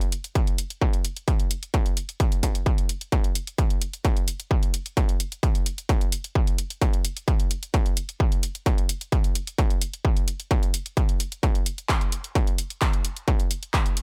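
Handclaps and hi-hats from an overdriven electronic drum kit open this 14-second techno fragment, part of a longer piece, with the hats pumping under sidechain compression. At 0.4 seconds a distorted kick drum arrives and sits up front in the mix, driving a straight 4/4 pulse at 130 BPM until 13.8 seconds. The kick is layered and pushed hard into overdrive, giving it a gritty, saturated weight that dominates the sound. The claps and hats, also layered and produced with drive, sit further back beneath it. A digital ambience surrounds the parts, and the mood stays relentless and intense throughout this single unbroken section.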